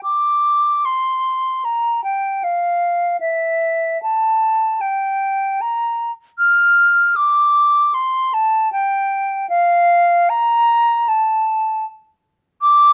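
Moving freely in rubato around 77 BPM in 4/4, this serene, dance-like baroque-style fantasia in F major is played by a solo concert flute from the start to the close at 12.9 seconds, ranging from E5 to F6. The flute sits up front with a pure, straight tone and clearly tongued notes, surrounded by light reverb. The excerpt is cut from a longer piece.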